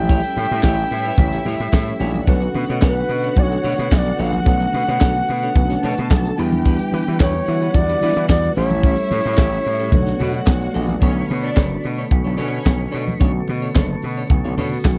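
A dry, close 1970s-style studio sound in a small room frames this sultry, glamorous disco excerpt at 110 BPM in B minor, where a breathy bamboo bansuri carries the melody until 10.7 s over a dark, lush bowed string section that plays until 12.9 s, a mellow tine electric piano with phaser that adds a fill at 0.6 s, a lightly overdriven tonewheel organ on a slow rotary speaker holding chords, a gritty, punchy slap bass up front, a clean semi-hollow guitar in the background, a tight funk drum kit with handclaps and a high-tuned snare, and very quiet hard-hand congas.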